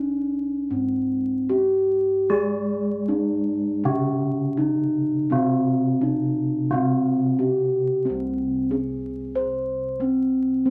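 Javanese gamelan in C pelog at 75-92 BPM, this shimmering, hypnotic excerpt sets an up-front bronze metallophone melody, struck with padded disc mallets for a mellow, ringing tone in a boxy small room, over soft, round bossed gongs with a vintage, band-limited beating bass, while a second metallophone played with a horn mallet enters at 2.3 s and stops at 8.0 s, its paired tuning giving shimmering beats, all beneath light reverb and vinyl crackle as the music moves into a new section at 8.1 s.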